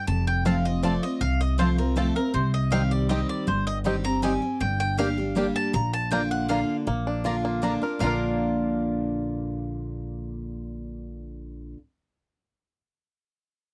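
Joyful and driving, this short bluegrass cut from a longer piece runs at a brisk 159 BPM in a straight 3/4, settled in Bb major. A bright, picked mandolin carries the melody from the first beat, its double strings ringing with a woody edge, while a full-bodied dreadnought acoustic guitar sits up front in the accompaniment, finger squeak audible on the strings. A thumpy upright bass, plucked and warm, anchors the low end close to the listener. At 0.5 seconds a twangy, percussive banjo played with fingerpicks joins the melody, and a second mandolin adds bright stabs alongside it. The chords move from F through Cm and Gm to Bb, and the dry, close sound of a 1970s-style studio with light reverb keeps every string intimate and present.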